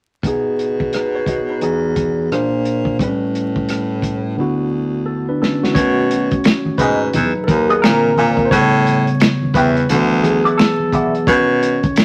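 Sensual and warm, this short neo-soul R&B cut sways at 87 BPM with a swung sixteenth feel, as a barky, lightly overdriven tine electric piano comps through chords like Emaj9 and D69 before taking a solo from 5.8 seconds. A clear baritone saxophone with vibrato carries the bass line, while a muffled, lo-fi soul drum kit with punchy kick, rim clicks and finger snaps plays a fill before the second section. Low-tuned congas sit in the background from 5.8 seconds, a dark semi-hollow guitar with wah adds a second line from 6.8 seconds, and vinyl crackle and moderate studio reverb surround the whole.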